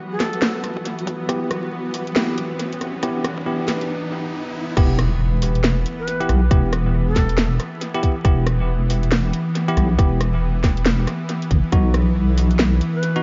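A swung, half-time 4/4 groove at 138 BPM drives this meditative, dark deep dubstep excerpt in E minor, built on a tight electronic kick and a garage drum kit of cracking snare, warm hi-hat, rim click and crash, the whole kit washed in tape echo. A tense, nasal string-like drone and a flickering, grainy background texture open the build-up while a riser and impact sit behind them. Bell-like tine electric piano stabs pass through a low-pass filter and dub echo, and an airy, reedy shakuhachi with chiff and vibrato drifts in for brief dub-echoed phrases. At 4.8 seconds the drop arrives with a soft, compressed wobble bass, chorused and tube-saturated, and the harmony moves from Em to B at 11.7 seconds, inside an echo-heavy mix with vinyl crackle and digital ambience.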